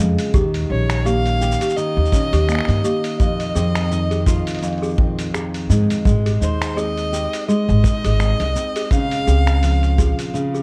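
Folktronica in Ab major at 84 BPM with a light 16th-note swing, this delicate, playful excerpt sets fingerpicked nylon-string guitar arpeggios with delay and woody pizzicato upright bass up front, a punchy acoustic kick and a muffled, pitched-down sampler kit of finger snaps, hi-hat and shaker, a clanky, slightly out-of-tune toy piano second line with delay from 0.3 s, and a bowed solo violin melody, rich with vibrato and delay, entering at 0.7 s, over Eb7, Fm7, Abmaj7 and Dbmaj7 in a dark production with vinyl crackle.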